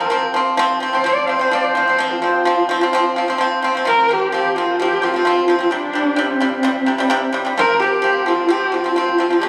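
A straight, galloping 4/4 pulse at 129 BPM drives this proud Mongolian folk fragment in F zhi mode, cut from a longer piece, with a horsehead fiddle and a pipa playing together up front throughout. The single bowed fiddle carries the melody with a husky, horsehair tone, vibrato, soft attacks and expressive portamento, while the dry, percussive pipa picks arpeggios with fingerpicks beneath it. The harmony moves from F5 to C5 at 5.7 seconds and back to F5, and a huge ambient reverb surrounds the phone-captured room sound.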